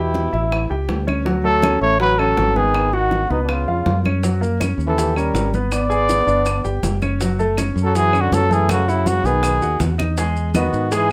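The recording has a light reverb and an intimate, close feel, in this sultry, sophisticated Afro-Cuban jazz passage cut from a longer piece. Up front, a breathy trumpet carries the melody with a soft attack, a whispered tone and gentle vibrato, while a raspy, growling trombone plays a gritty second line with scooped notes. A clear grand piano accompanies with long sustain and audible action noise, and a dark, punchy fingered electric bass sits forward in the mix. The percussion enters at 0.1 seconds with round, low-tuned bongos and damped, thin-skinned congas in the background; woody claves join at 0.5 seconds, and grainy maracas follow at 4.2 seconds. A fill arrives at 8.7 seconds, and the chords move through rich, colourful jazz harmony before settling on a major ninth.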